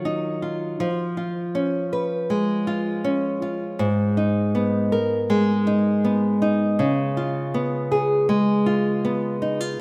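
A straight 4/4 pulse at 80 BPM carries this short, heartfelt and hopeful pop excerpt, cut from a longer piece, which is played by a lone nylon-string guitar. Fingerpicked on fresh, bright strings, the small-sounding acoustic sits up front and moves from D#madd9 through C#7/E# and G#madd9 to C#7 across 9.8 seconds, ranging from G#2 to B4. A lush hall reverb surrounds it, while the mix keeps the rough feel of a home demo.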